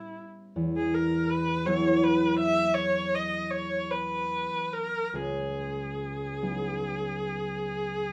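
Swaying in a rubato 12/8 at 46-56 BPM, this luminous, dreamy impressionist classical duo sets a rich, expressive bowed viola singing the melody with vibrato, soft attacks and portamento over a ringing, thumb-plucked concert harp, both up front in a close, detailed sound with light reverb, as the harmony drifts from A13 to Eadd9 at 0.6 seconds and on to C#9sus4 at 5.1 seconds in this short cut from a longer piece.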